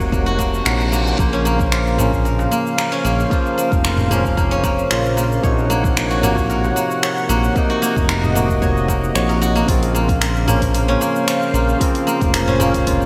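A bright, 1980s-style digital sheen and a lush hall reverb frame this hypnotic, mystical organic downtempo excerpt at 113 BPM in Bb minor, where a deep layered electronic kick and a deep house kit of finger snaps, dark hats and shaker play alongside a smooth, nasal, detuned synth bass, a barky tine electric piano with delay and sidechain pumping, a chorused analog pad on sustained chords, and silvery fingerpicked steel-string zither arpeggios, while a reverse cymbal sweeps in at 0.5 seconds as the kick briefly drops out, a crisp metal-shell darbuka enters very quietly at 1.5 seconds, and the harmony moves between Gb, Bbmadd9 and Gb/Bb.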